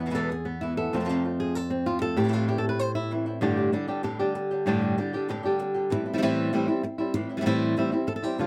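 A fingerpicked nylon-string flamenco guitar opens this fiery, passionate excerpt with an up-front solo melody on fresh strings, while a second, quieter fingerpicked acoustic guitar adds stabs with audible finger squeak as the harmony moves from E and F to Am7, then shifts to Gsus2 at 3.4 s before returning to Am7, the whole captured dry and detailed by close microphones.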